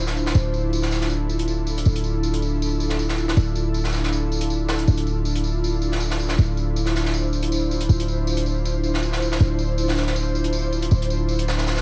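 A crunchy, gritty breakbeat kit of hi-hat, snare and tambourine enters at 0.1 s with a light 16th-note swing at 159 BPM in 4/4, driving this atmospheric, raw drum and bass and jungle excerpt in D minor, where a deep, boomy 808-style bass holds D1 up front beneath an ethereal, airy pad of detuned, chorused chords sustaining a Dm9 throughout, set in a small room with light reverb and vinyl crackle.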